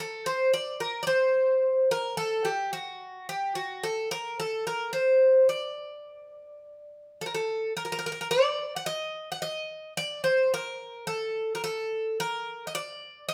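Cool and bittersweet, this short cut from a longer Greek folk piece moves at 108 BPM in a straight 4/4, set in D phrygian dominant with tuning at A4 = 441 Hz. A Greek bouzouki takes the solo role, picked on its double strings with some octave-doubled courses that give the tone a metallic, bright edge. Its line sits between F#4 and F#5, placed up front in the mix. The music falls into two parts, the first running to 7.7 seconds and the second carrying on until the cut at 13.3 seconds. A light reverb and the feel of a band playing live in one room surround the acoustic sound.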